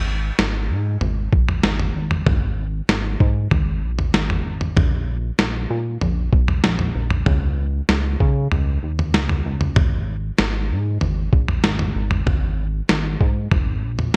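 Bright 1980s-style digital production with light reverb and a digital ambience frames this melancholic, ethereal dream pop excerpt in G# minor, moving at 96 BPM in a straight 4/4. A glossy, nasal chorused synth bass with a plucked filter attack sits up front from the start, and the lo-fi sampler-style drum kit joins at 0.4 seconds, pitched down and muffled, with a thumpy kick, a medium-tuned snare and toms bathed in gated reverb.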